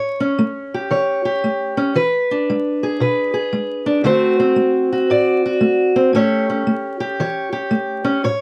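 A swung 4/4 feel at 115 BPM drives this short, rollicking and gritty blues excerpt in A mixolydian, where a lone fingerpicked steel-string parlour guitar with dark, woody, boxy old strings sits up front through close, detailed microphones and light reverb, moving from A7 to E7 at 2.0 seconds, D7 at 4.1 and back to A7 at 6.1 over a bed of vinyl crackle.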